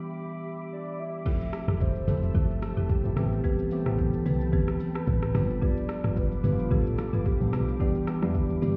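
Amapiano at 110 BPM in 4/4 with a light swing on the sixteenths, this soulful, hypnotic cut from a longer piece opens on a short break where a worn, slightly out-of-tune tine electric piano, up front through a combo amp, plays accompaniment under a glassy, ethereal FM pad whose sustained chords shimmer with ensemble chorus and pump against the beat. A soft octave-layered synth lead, round and dark with a sub octave and vibrato, brings in the melody at 0.7 seconds, dressed in chorus, phaser and delay. At 1.3 seconds the drop arrives with a deep house kit of deep kick, metallic hats, rim click, shaker and crash, along with dry, rustic marimba stabs that sit in the background with a touch of delay. The woody, punchy log drum bass joins at 1.7 seconds, with fast-attack notes that decay, while very quiet congas with a bright, thin skin add hand percussion. The harmony moves from Em7 through Fmaj9, Am9 and G7 back to Em7, and the whole mix sounds muffled, as if heard through a wall in a stone room.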